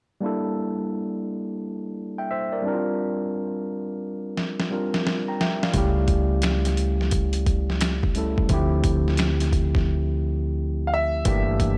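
R&B with a neo-soul lean, this soulful, sultry passage cut from a longer piece moves in 4/4 with a swung sixteenth-note feel. An overdriven tine electric piano opens it alone, barky and up front as if through a combo amp, voicing chords that move from Gm69 through C7sus4, A7/C#, Dm11 and back to Gm69. A boom bap sampler-style kit arrives with a fill at 4.4 seconds, its compressed, pitched-down sound carrying a thumpy kick, a medium-tuned snare, hi-hat and finger snaps, gritty and pushed forward with its own overdrive. A deep dub fingered bass joins at 5.8 seconds, dark, round and punchy in a low register. During a break, a clear concert grand piano steps up front at 10.9 seconds with a brief natural-sounding melody, and from 11.3 seconds a small, thumb-plucked nylon-string guitar adds a barely audible second line. Light reverb and digital ambience frame the whole.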